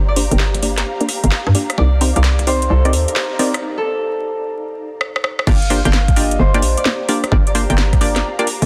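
This skippy, bouncy two-step UK garage excerpt in G minor at 130 BPM opens with a ringing Celtic harp melody that carries vintage 12-bit sampler grit and digital delay. Around it sit punchy, detuned sawtooth chord stabs with chorus, tape echo and a filter sweep through the build-up, alongside a hollow, up-front FM bass that knocks on each note. A mellow, ethereal pad hangs in the background, its slow-blooming unison tones softened by ensemble chorus and reverb and pumping against the beat. The garage kit of cracking snare, metallic hats, rim clicks and crash enters at 0.2 seconds with a swung shuffle, while a tape-warm electronic kick comes and goes as the harmony moves from Gm7 to Cm9 before a break at 3.6 seconds. After a drum fill, the drop lands at 5.5 seconds, with the kick returning under Gm7 in a dense, heavily limited mix dusted with vinyl crackle.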